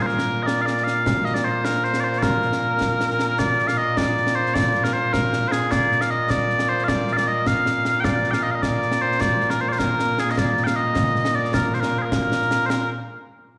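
Scottish traditional pipe music in a straight 6/8 at 103 beats per minute, this short cut from a longer piece carries a proud, stirring mood in Bb major. Mellow small bagpipes carry the melody from the opening moment through 12.9 seconds, sweet and continuous with vibrato, sitting up front as the solo voice and ranging from Bb2 up to G5. Plate reverb and a slapback echo lend the pipes a glossy halo. Concert snare and bass drums sit lower in the mix, acoustic and close like a small room, with dark cymbals colouring their backing. The performance sounds like a live gig heard through the venue's PA, with a moderate club-like reverb and recital-hall spaciousness, and the tune moves from its opening phrase into a new section at 3.4 seconds.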